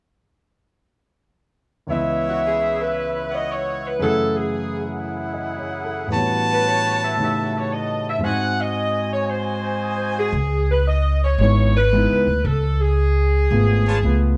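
Jazz with a swinging, dramatic mood, cut from a longer piece and set over a swung feel and rich chords. A polished baby grand piano with long sustain accompanies while a mellow saxophone section carries the melody with light vibrato, and a clear, close-miked trumpet section punctuates with tight, soft-attack stabs until about 10.4 seconds, returning briefly near 13.9 seconds. At 10.3 seconds a woody pizzicato upright bass enters up front as the music moves into a new section, and the mix sits in light reverb with close, detailed microphones.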